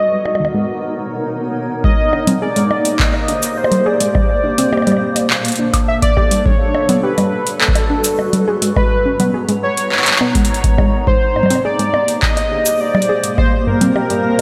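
A velvety, detuned synth lead with chorus and ambient delay carries the melody over a cloudy, blurred granular pad with vintage 12-bit grit from 0.0 s, opening this playful, intricate IDM piece at 104 BPM in a dreamy, reverb-soaked hall. A tape-warm analog drum machine with bongos, congas, cabasa, handclaps and metallic hats comes in at 0.3 s, while a warbling, lo-fi, dusty pluck plays dark arpeggios through chorus and analog delay, and a short break passes before a deep, up-front electronic kick arrives at 1.8 s. The chords drift through lush major-ninth shapes, from Bmaj9 to Abmaj9, Bbmaj9 and Gmaj9.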